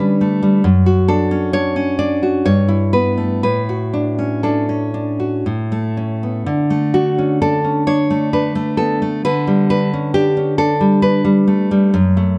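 Warm and nostalgic, this romantic excerpt for solo nylon-string guitar unfolds in an unhurried, rubato three-beat lilt, cut from a longer piece. The fingerpicked guitar sits up front with a full-bodied, deep classical tone, ranging from F#2 to D5 as it moves through a gentle sequence of chords, many of them inverted, over its 12.4 seconds. Close, detailed microphones catch every note, while a moderate recital hall reverb adds a soft sense of space.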